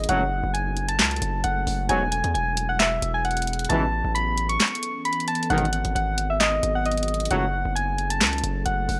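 A half-time 4/4 groove at 133 BPM drives this menacing, hard-hitting trap excerpt, where an up-front electronic drum kit with sharp snare, bright hi-hats and handclaps (its kick dropping out from 4.6 to 5.5 seconds) pairs with a heavy, saturated 808-style bass, while soft, round electric-piano-like synth keys carry a dark melody through chorus and analog delay over a glassy, ethereal FM pad and mellow brass ensemble stabs that fall away at 7.5 seconds, all moving through F#m, Eadd9, Aadd9 and G#m7 in a dry, gritty sound.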